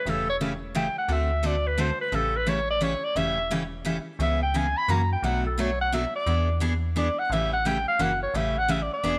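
A clear, punchy clarinet leads from the first moment, playing a forceful jazz-style solo with light vibrato and a vintage character, sitting up front from 0.0 to 9.2 seconds. This is a lively, playful slice of acoustic string swing in the jazz manouche tradition, moving at 174 BPM in 3/4 with a swung eighth-note feel in A mixolydian. A picked steel-string acoustic guitar supplies the accompaniment, its bright, full-bodied jumbo tone and fresh strings carrying audible finger squeak. Beneath them, a metallic FM bass with a digital edge, fast attack and decaying notes holds down the low end. The harmony travels from A7 through D7, C#m7, F#7b9, Bm7 and E7 before settling back on A7, all framed by a light, small-room reverb.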